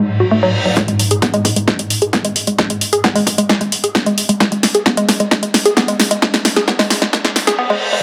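A moderate digital plate reverb gives this driving peak-time techno cut a high-passed ambience. It sits at 132 BPM in G# minor with a straight, hypnotic and intense feel. A woody, wave-folded pluck carries the riff throughout with a fast attack and short decay, up front and treated with chorus, overdrive, tape echo and sidechain pumping. At the start, a swarming, detuned drone on G#2 holds its granular shimmer beneath a reverse cymbal until both give way at 0.8 s. From there, a heavy, layered, overdriven electronic kick and a dry, punchy analog drum machine on hi-hat and snare drive a build-up and drum fill, the hats pumping under sidechain. A filter sweep works through the synth line across the build, and a second reverse cymbal rises at 7.4 s into the cut-off at 8.0 s.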